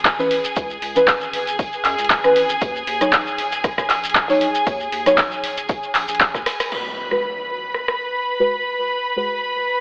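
Moody, smooth deep house at 117 BPM in G# minor, cut from a longer piece, where up-front deep mellow chord stabs with warbling chorus and dub echo and a vibrato-rich studio violin section float over a round analog bass with tube saturation and sidechain pumping, a punchy tape-warm electronic kick, an analog drum machine with handclaps, rim clicks, hi-hat and crash, a very quiet acoustic country kit, and a grainy shekere, all heard through a telephone-like echo chamber until a drum fill at 6.3 s gives way at 6.7 s to an electronic impact and a shift to G#m7 as the violins and stabs carry on alongside the drum machine.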